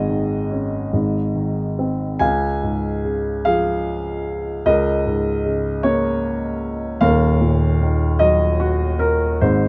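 A warm grand piano carries this short classical passage alone, sitting up front with a close, detailed sound and very little room around it. The mood is calm and peaceful, moving at a slow 50 BPM in a 6/8 whose beats stretch and relax freely with rubato. The piano spans from a deep Eb1 in the bass up to Ab5, giving the lyrical writing a full, resonant foundation beneath its upper notes. The harmony opens on Absus4 and settles to Ab by 0.9 seconds, moves to Db at 2.2 seconds, passes through Absus24 over Db, and turns to E-flat minor at 7.0 seconds. Lasting just under ten seconds, this is a brief moment cut from a longer piece.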